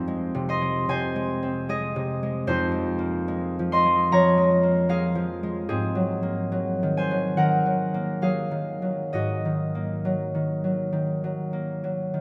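Classical solo harp in a peaceful, dreamy mood, this 12.2-second fragment of a longer piece flows in a rubato 4/4 at roughly 64-79 BPM, its up-front, fingerpicked concert harp ringing with a warm acoustic tone from F2 to C6 through Fm7, Bbm11/F and Ab13 chords, bathed in a wet church reverb with a 2.7-second decay.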